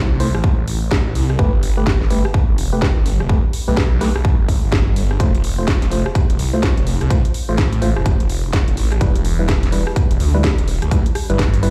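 A thick, swirling detuned saw bass opens this swaggering, gritty bass house excerpt at 126 BPM, running from E1 to D2 with phaser, overdrive and sidechain pumping over a swung 16th feel. From 0.2 seconds a hollow, dark organ stab with chorus and dub echo joins, along with an overdriven house kit of cracking snare, rim click and bright hats, while a punchy, tape-tinged kick re-recorded in a large room sits up front from 0.4 seconds. The chords move from Am through Gadd9 and F to Em, and the bass and kick dominate a dry mix.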